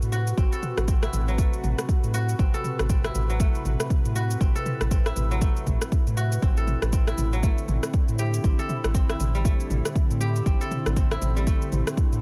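A dry mix carries this spiritual afro house fragment at 119 BPM in A dorian with a 16th-note swing, where a deep, overdriven electronic kick enters up front at 0.4 s over a gritty deep house kit of rim click, shaker and toms, a round, dark sawtooth-and-sine bass pumps against the kick, crisp, ringing kora arpeggios drift through a low-pass filter and dub echo, and an airy, detuned analog pad with chorus and phaser holds Am69 before shifting to Cadd9/A at 7.4 s.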